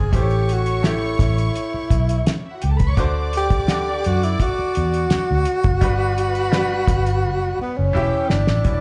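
A breathy, whispered tenor saxophone carries the melody up front, mellow and close with vibrato and a slapback echo, in this smooth, bittersweet slice of lush 1970s-style soul at 84 BPM in 4/4. Beneath it, a brilliant grand piano with short sustain and a bowed string section, played sul tasto with a soft attack, share that slapback echo, while a round, foam-muted fingered electric bass and a cloth-damped, thuddy drum kit with a fat snare and tight kick sit up front, the bass punchy and the kit dry. The chords move through A7, D7, Gmaj7 and Em7, and a drum fill at 7.2 seconds closes the cut, all heard as a live gig through the venue's PA with club reverb and a dulled top end.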